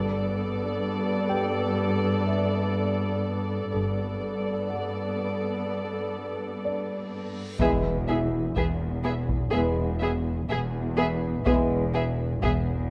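In a straight, slow 4/4 pulse, this tense, ominous suspense cue for a film score opens on muted, con sordino strings, with a distant, veiled violin section carrying a narrow melody over close violas, up-front cellos and a soft-attack double bass section, all bowed with vibrato. A grand piano with short sustain joins in the background at 1.3 seconds, adding texture above the dark, hushed Gadd9 harmony. At 7.6 seconds the music shifts to E: a reverse cymbal leads into a huge impact, a second close, chamber-sized muted violin line holds a single note, and heavy-stick taiko drums arrive, compressed and saturated. Tight, mellow French horns with light vibrato and smooth-topped trombones lay sustained chords in a classical style until 11.8 seconds. Light reverb surrounds the ensemble, and the passage is cut from a longer piece.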